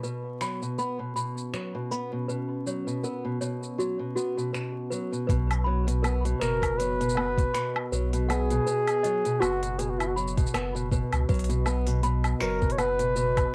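This hopeful, playful folktronica piece, cut from a longer work, opens with a dark, woody fingerpicked acoustic guitar playing up-front arpeggios, a clanky, bell-like toy piano with plastic hammers carrying a slightly out-of-tune second line through analog delay, and a tape-colored organic electronic drum kit of finger snaps, crisp hi-hat, shaker and woodblock over a gently swung sixteenth-note feel. A warbling, nostalgic pad of detuned square and triangle tones with ring modulation and chorus sits in the background holding sustained chords, while a filter sweep moves across it during the opening section. At 5.3 seconds a round sine sub bass and a soft, tape-softened electronic kick drum come in, deepening the groove. A mellow, smooth-topped flugelhorn enters at 6.4 seconds to take the solo melody up front in a classical style, roughened by vintage 12-bit sampler grit. The whole recording carries a homespun cassette character with vinyl crackle and light reverb, giving it a lo-fi, intimate glow.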